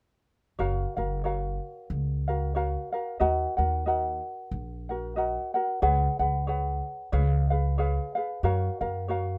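A relaxed 92 BPM pulse in 4/4 carries a gentle 58% swing on the eighth notes, giving this short Hawaiian passage from a longer piece an easy, lilting sway. In F# major and tuned with A4 at 445 Hz, the music has a dreamy, unhurried mood. Ukulele and upright bass enter together at 0.6 seconds and play through to 9.4 seconds, both sitting up front. The ukulele supplies accompaniment with a mellow, light, thumb-plucked tone. Beneath it, the pizzicato upright bass on gut strings sounds woody, dark and thumpy. The harmony moves from F#maj7 to D#m, then through C#7sus4 and C#7 before settling back on F#maj7, all wrapped in a light reverb.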